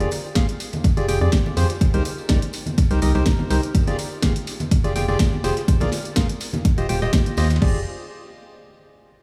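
A punchy, tape-warm electronic kick sits up front from 0.4 seconds, driving a 124 BPM house groove with a light 16th-note swing, backed by a layered house kit with cracking snare, hi-hat and crash, and a very quiet, gritty, overdriven sampler-style kit adding hi-hat, ride and a medium-tuned snare. Ringing tambourine and congas sit in the background, giving the beat an acoustic, live-room edge. This is energetic, bittersweet piano house in F dorian, cut from a longer piece and opening straight into a drop that runs to 7.6 seconds, with chords moving through Fm69, Cm7, Fm69, Bb7 and Eb69 before returning to Fm69. A dark, hollow, organ-like FM bass with a fast, decaying attack pumps against the sidechain underneath, while a percussive organ stab riff with a sine, sawtooth and noise-layered, ring-modulated tone adds chorus and a diffuse ambient delay up in the midrange. The whole mix is dreamy and soaked in a moderate church reverb, with a small-room ambience blended in.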